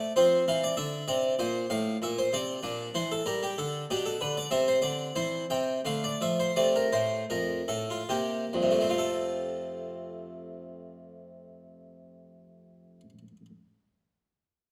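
A solo harpsichord carries this dance-like, radiant movement in the baroque style, set in F major and 3/4 time and tuned to A4 = 441 Hz. The tempo moves freely between 67 and 98 BPM with a rubato feel. The harmony passes through G minor over B-flat, B minor seventh, C, D minor and back to F, and the playing slows from 3.6 to 9.0 seconds. The instrument is a Flemish-style harpsichord with three sets of strings, giving a full, brilliant, airy plucked tone that spans from F2 up to G5. Close, detailed microphones place it up front, while a recital hall adds a generous, lingering reverb. At 9.0 seconds a new section begins on an F chord, and the passage breaks off around 13.5 seconds, cut from a longer piece.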